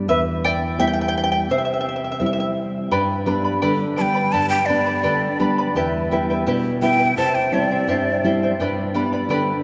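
This melancholic, earthy Andean folk excerpt opens with a full-bodied, fingerpicked nylon-string guitar, joined almost at once by the shimmering double strings of the charango, which takes a solo through the first 2.9 seconds. The pace is an unhurried 85 BPM in a straight 2/4, with the harmony moving through E minor, C and G. Both string parts sit up front: the guitar brings deep classical body and audible finger squeak, while the charango's octave-doubled strings add sparkle above it. At 4.0 seconds a large wooden quena enters with the melody, its breathy, end-blown tone carrying a crisp, chiffy attack, bright lifted highs and an unsteady vibrato, thickened by tape echo until it stops at 8.2 seconds. The whole performance is set in a vast, echoing cathedral reverb with a long 5.5-second decay that gives the earthy playing a solemn, spacious cast.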